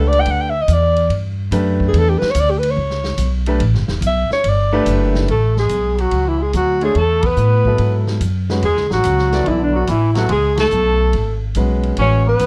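Open and searching, this modal jazz passage, cut from a longer piece, swings at 143 BPM in 4/4 and settles into A major at 5.3 seconds. A breathy alto saxophone carries the melody up front, close-miked and intimate, with vibrato, subtone, a soft attack and scooped notes as it takes a solo over the A13sus4 opening chord. A baby grand piano supplies accompaniment with long sustain, while a woody pizzicato upright bass sits prominently beneath and a vintage drum kit keeps time quietly on hi-hat, ride, snare and kick, its dark cymbals and rolled-off top sounding natural in a studio room. When the harmony opens to Amaj9, a trombone with a metal mute enters on a second line, buzzy and thin yet brilliant. The band hits accents at 7.2 and 10.5 seconds, and the production stays dark and warm with light reverb.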